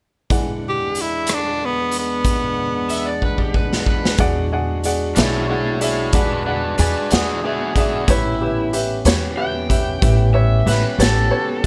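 A raspy, growling tenor saxophone carries the opening melody of this swaggering, gritty slow blues in 12/8 at 62 BPM in E mixolydian, moving over E7 before giving way at 3.2 s to a drum fill on a saturated, punchy garage kit in a bright stone room. From 4.2 s an overdriven electric slide guitar takes a solo over E9 and then A9, joined by a woody pizzicato upright bass. Throughout, a clear, intimate upright piano with audible action noise and a clean tonewheel organ with its rotary speaker stopped hold the harmony under light reverb, in this section cut from a longer piece.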